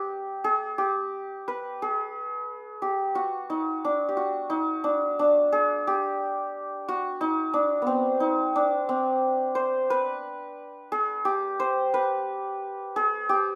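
Warm and passionate, this fragment of a longer Persian piece in a straight 6/8 features a solo santur carrying the melody from the start, its mellow, shimmering hammered tones sitting up front in a small, reverberant room with the rough intimacy of a home demo.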